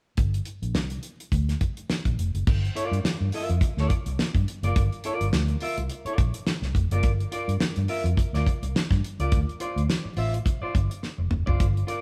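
Vinyl crackle and a moderate stone-room reverb frame this driving, sly funk excerpt in G dorian at 105 BPM with a light 16th-note swing, where a dry, up-front 70s drum kit with a fat snare and tight kick plays alongside a dark, round, foam-muted fingered electric bass from 0.2 seconds, a clean, picked electric guitar enters softly at 2.8 seconds over Gm7 before the move to Dm7 at 9.3 seconds, and a drum fill at 11.0 seconds closes out the live-in-one-room performance.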